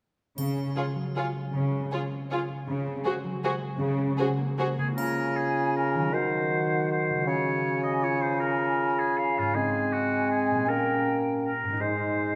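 Elegant and sweeping, this classical ballroom waltz in 3/4 moves with uneven, rubato beats, and it is cut from a longer piece. A ringing, fingerpicked concert harp plays arpeggios throughout, while a triangle adds close, dry sparkle at the start and again at 5.0 seconds. In the opening, a rich cello section holds the bass up front beneath lush, bowed strings: two violin sections carry the melody and a second line with vibrato, and an intense viola section fills in the accompaniment. Around 4.8 seconds the strings give way to woodwinds, led by a clear oboe up front, with an airy, distant flute above, a mellow clarinet in the middle and a roomy bassoon underneath. The whole passage sits in a wet scoring-stage reverb that lends it a spacious, ballroom glow.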